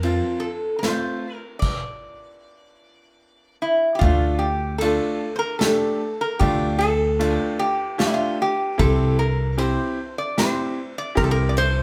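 A metal-body resonator slide guitar carries the melody up front, its fingerpicked tone metallic and nasal as the slide shapes a bittersweet, soulful line in this klezmer piece, cut from a longer performance. It moves at 75 BPM in a straight 3/4, in D minor. A bright upright piano accompanies with a brilliant, woody voice and long sustain, while an unplugged drum kit played with bundle sticks adds a punchy kick, a medium-tuned snare, ride and crash cymbals. The harmony opens on F and gives way to a chordless stretch at 1.6 seconds. After a brief opening note, the pizzicato upright bass, dark and thumpy on steel strings, returns at 4.0 seconds as the passage turns to D minor, moving to C at 8.8 seconds. The band plays live in one large studio with moderate reverb, giving the ensemble an open, natural room sound.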